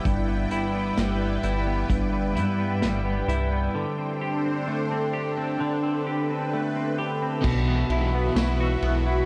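Set at a slow 65 BPM in a straight 4/4, this blissful, ethereal dream pop excerpt in G major drifts over chords moving from G6 to D7sus4 and then Bsus4. A lush unison pad sits up front with thick, detuned sawtooth and square-wave layers and a sub octave, fading in slowly and holding sustained chords colored by chorus and phaser. A clean, fingered semi-hollow electric guitar plays arpeggios with a hollow-body glow, treated with subtle chorus and digital delay, while a glossy, retro synth bass with a pulse-width-modulated pluck and its own chorus anchors the low end. A vintage drum kit with a muffled, lo-fi character and rolled-off top covers kick, snare, hi-hat, ride, crash and tambourine. At 7.4 seconds a dark, overdriven, double-tracked electric guitar enters in the background with tremolo and subtle chorus. Light reverb and a small room ambience frame the dark, warm production.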